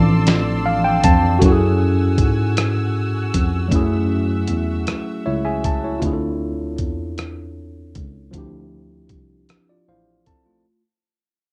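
A very quiet, dark electric guitar note opens this sultry, late-night slow R&B excerpt in 6/8 at 52 BPM in F# minor, alongside a worn, slightly out-of-tune tine electric piano pushed lightly through a combo amp for fills, a second tine piano carrying the bass through built-in speakers, and a nasal, earthy string section with light vibrato that holds chords until 6.0 seconds, while a gritty, compressed sampler-style drum kit with a thumpy kick and rim click enters at 0.3 seconds, all under light reverb and a cassette-dusted home-recorded sound that fades out from 1.4 seconds to the end of the passage.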